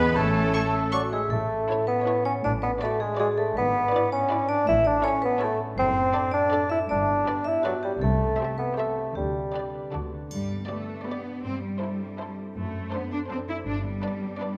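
Set in the wet reverb of a scoring stage, this playful, mischievous film cue in 3/4 at 161 BPM opens in A major and moves to G major at 5.8 s. A bright, metallic vibraphone carries the melody until 9.9 s alongside a rich, expressive violin section, over a prominent bassoon, lush violas, dark cellos, soft-attacked double basses and a ringing, thumb-plucked harp. A hollow flute, a mellow cor anglais, a distant clarinet and a roomy horn section sound only in the opening moments, and a close triangle adds a brief touch at 10.3 s.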